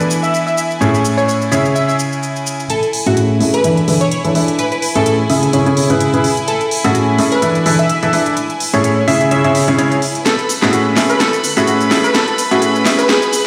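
A swung 127 BPM groove in A major drives this joyful piano house excerpt, where a bright, up-front grand piano riff with delay and a filter sweep builds from 2.7 seconds alongside floating sul tasto violin chords, a catchy, punchy detuned lead melody, crisp hats with a cracking snare and a drum fill from 10.3 seconds, and a dark, round, very quiet fingered bass, all heard through a stone room's reverb as if played on a big sound system.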